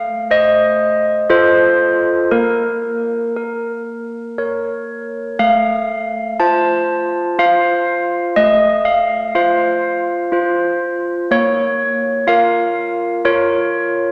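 A slow, straight 3/4 pulse at 61 BPM carries this short classical passage for solo handbells, tuned to A4 = 439 Hz and cut from a longer piece, with a wintry, solemn mood. The handbells play alone throughout, spanning A3 to A5 with a clear, ringing, bell-like tone from hard clappers, heard close-miked, full and up front, while a long concert-hall reverb surrounds them. The harmony moves from F7/A and F7 to B♭m, then a new section opens on F/A at 5.4 seconds and returns to B♭m at 11.3 seconds.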